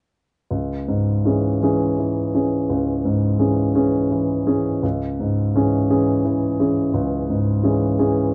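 A polished, up-front baby grand piano enters at 0.5 s with solemn, yearning classical accompaniment on a C# minor chord, moving freely in rubato 12/8 at roughly 54-58 BPM through a low-to-middle range in this brief fragment of a longer piece, heard through light reverb and the worn, warbling pitch drift of old cassette tape until it stops at 8.3 s.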